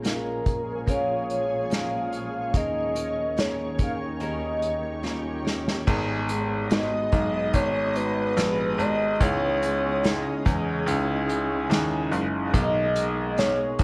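An up-front acoustic drum kit played with bundle sticks anchors this heartbroken pop ballad fragment, with a fill leading into the second section at 5.9 s, where a bright, short-sustained grand piano enters on the bass line beneath a round, horn-like synth lead carrying the melody with vibrato, a clean bell-like tine electric piano, picked steel-string guitar arpeggios in the background and a shimmering, ethereal pad, all heard through a small room and worn, warbling cassette tape.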